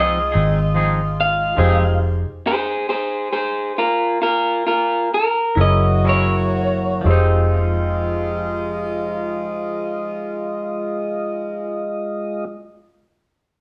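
A brooding, mournful slow blues in 12/8 with a straight feel, cut from a longer piece, it opens with a slightly broken-up, lo-fi electric guitar through a small old amp taking a clean solo up front as the tempo slows, stopping at 7.0 seconds, while the harmony moves from Fm7 to Gb7 and back. Beneath it a twangy electric guitar with harmonic tremolo and a polished concert grand piano with deep bass fill in the accompaniment, while a flute-like tonewheel organ with key click and slow rotary speaker holds sustained chords alongside a tight, jazz-style horn section. A dark, round, foam-muted fingered electric bass sits punchy and up front, and the whole band plays live in one room within a moderate large studio reverb.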